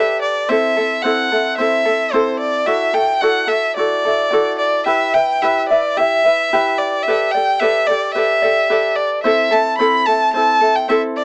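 Tender and wistful, this short pop excerpt moves at 110 BPM in a straight 4/4, with a clear, smooth solo violin carrying the melody in a bowed, even line with vibrato, sitting up front over a warm, fingerpicked acoustic ukulele that plays throughout the 11.2 seconds. The chords cycle from Am through Dadd9, Em and Gadd9 before returning to Am at 9.2 seconds. A light reverb and the sound of worn, warbling old cassette tape with pitch drift give the whole a small-speaker cast.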